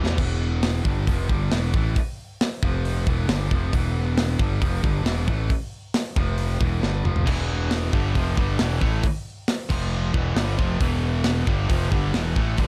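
Heavy and aggressive, this heavy metal excerpt in E minor drives at 136 BPM in a straight 4/4, with a scooped high-gain guitar riffing throughout, a second bright distorted guitar flashing at the start and then joining from 7.3 seconds just after a drum fill, a fuzzy, punchy picked bass up front, and a tight, mid-forward acoustic drum kit with rolled-off top hitting crash, hi-hat, kick, snare and toms, all cycling between Em and F5 in a dark, dry production.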